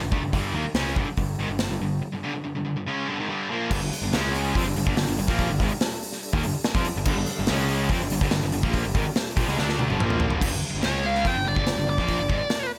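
Hard rock in G minor at 143 BPM, menacing and driving: two bright, distorted electric guitars and a dark, round fuzz bass pound out a riff over a punchy, up-front drum kit with bright cymbals, joined at 3.7 seconds by a double-tracked semi-hollow guitar with spring reverb and a very quiet tonewheel organ with key click, chorus vibrato and a slow rotary speaker, before a drum fill leads to a biting lead guitar solo with digital delay at 10.9 seconds in this short cut from a longer piece.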